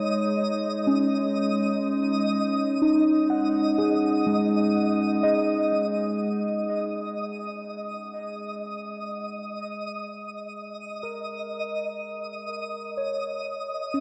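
Muted, felt-like synth keys sit up front, playing soft, intimate arpeggios whose fast attacks decay into the dark, warm production of this reflective, melancholic ambient excerpt cut from a longer piece. Beneath them, a calm, nasal organ-like drone with a slow attack and ensemble chorus sustains until 6.3 seconds, when it stops and leaves the keys and the upper texture to carry the second section. High above, a twinkling granular texture adds a sparkling octave-up shimmer that swells in slowly and holds through the full 14.0 seconds. The keys carry chorus and tape echo, and a lush hall reverb with a 2.9-second decay bathes the whole mix in a deep, wet space.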